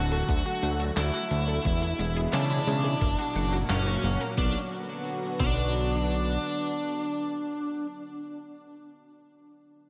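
Synthwave in B minor at 88 BPM, nocturnal and moody, where an overdriven, picked electric lead guitar with delay carries the melody over a lush, detuned unison pad with chorus, phaser, 12-bit sampler grit and sidechain pumping, a very quiet, bright pluck arpeggiating until 5.6 s, a fat sawtooth analog bass up front, a detuned 8-bit drum machine of handclaps, hi-hat, snare and tambourine until 4.3 s, and a thumpy, tape-warm electronic kick, the mix soaked in dreamy cathedral reverb as the chords move from D through E and F# to Bm.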